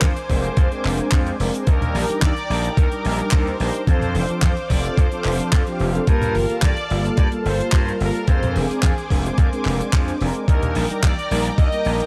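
This is a groovy, cosmic nu-disco fragment at 109 BPM in straight 4/4, cut from a longer piece, where everything starts together at 0.0 seconds: a thumpy, sampler-style electronic kick sits up front over a tight, polished funk kit of handclaps and hi-hat, with very quiet congas and bongos played with hard hands close and dry until 11.1 seconds. A gritty, overdriven slap bass punches through with a bright, amped edge, moving through a low register under chords of Bb9/F, Ebmaj7, Dm7/F and Gm9. Mellow synth brass fills the accompaniment with a round, detuned sawtooth tone, vibrato and a filter sweep, its chorus and sidechain pumping giving it a breathing motion. Behind it, a thick, warbling vintage unison pad holds sustained chords high in the background with slow attack and long release, also chorused and pumping. On top, a distant, smooth symphonic violin section carries the melody with rich ensemble vibrato and an analog delay trailing its lines. 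The recording has little reverb and a dry, gritty hardware character with cassette-tape grain.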